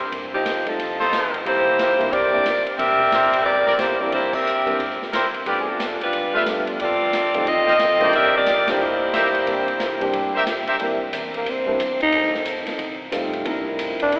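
Heard through a narrow, telephone-like filter and bathed in the long, wet reverb of a church or concert hall, this joyful, energetic big band swing excerpt moves at 180 BPM in 4/4 with swung eighth notes, centred on C mixolydian over F7, C7 and G7 chords. A tight, close-miked saxophone section with light vibrato carries the melody up front. Bright trumpets punch out stabs in the background, and the band lands accents together. Underneath, a woody, thumpy pizzicato upright bass sits far back, a concert grand with deep bass lays down accompaniment, and a natural-sounding acoustic kit with a punchy kick and medium-tuned snare drives the groove on ride, hi-hat and crash. The trumpets drop out at 10.8 seconds as a soft-attacked trombone section enters with sustained chords, and at 11.4 seconds a growling tenor saxophone takes a solo, dark, breathy and raspy with subtone, vibrato and scooped notes.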